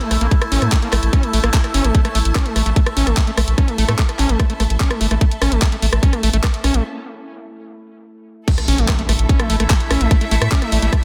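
A screaming, distorted acid line drives this psychedelic trance excerpt at 147 BPM in A major, its squelchy, resonant sawtooth riff sitting between A3 and C#4, colored by chorus and tape echo and pumping against the kick. Underneath, an overdriven electronic kick drum enters at 0.3 seconds, tight and up front, alongside a round, deep analog bass and a layered, overdriven garage kit of crash cymbal, handclaps, hi-hat and rim click. An overtone-sweeping drone holds sustained chords with a slow attack and long release, while a clear, bowed studio string section with vibrato fades in quietly in the background over the first 8.5 seconds. A break at 6.8 seconds gives way to a drop at 8.5 seconds, marked by a very quiet electronic impact. A metallic, wobbling FM bass appears only briefly in the background, high-passed and touched with digital delay. The hypnotic mood is carried by a dense, heavily limited modern master with light digital ambience.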